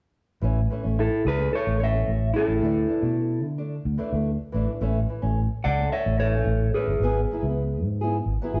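Highlife guitar band music in A major at 109 BPM and a straight 4/4, joyful and carefree, heard as a short cut from a longer piece. A round, punchy fingered electric bass sits up front beside a dark, slightly broken-up electric guitar that carries the melody from 1.0 to 7.8 seconds, while a quieter, boxy and woody fingerpicked old ladder-braced acoustic guitar with old strings plays accompaniment over A, Dsus2 and Eadd9/G# chords. The band plays live together in a wet stone room with a 1.3-second reverb, and the sound stops short of 7.9 kHz, giving it a muted top end.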